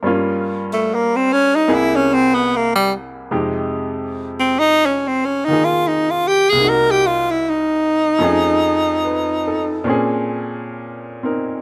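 Close, detailed microphones and a light reverb give this brief jazz ballad fragment an intimate, tender presence. At 73 BPM in 4/4, with a gentle swing on the eighth notes, an upright piano with a woody, brilliant tone and short sustain accompanies throughout, sitting up front but beneath the melody. A close-miked tenor saxophone enters at 0.7 s and carries the solo line until 9.9 s, its bright jazz voice shaped by vibrato, subtone and scooped notes. The harmony moves from Gm7b5 and C7b13 to Fm9, then on through Cm7b5 and F7alt before arriving on Bbm9. Cut from a longer piece, the passage feels like a quiet, personal moment caught mid-phrase.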